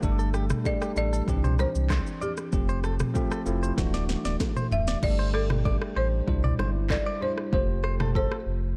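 This mellow, sultry afrobeats excerpt is anchored by a deep, full sub bass with an octave, its sine-like fast attack and sustained notes sitting up front beside an electronic afro-pop drum kit with a deep kick, sharp snare and tape-warm character. At 96 BPM in a straight 4/4, the kit's crash, handclaps, rim clicks, shaker and toms drive the groove, while very quiet congas and bongos add an acoustic, live-room layer underneath. A bell-like tine electric piano supplies bright, clean chords moving through Gsus2, Cadd9, Fadd9 and Dadd9, as a woody folk marimba with medium mallets carries the rustic, dry melody and a picked, twangy, compressed electric guitar plays a riff, both touched with delay. A drum fill from 3.8 to 5.0 s leads into a second section where the hi-hats drop out and a soft-attack French horn section enters with tight, lightly vibrato sustained chords, kept very quiet. The dark production has little reverb, giving the parts a close, intimate feel.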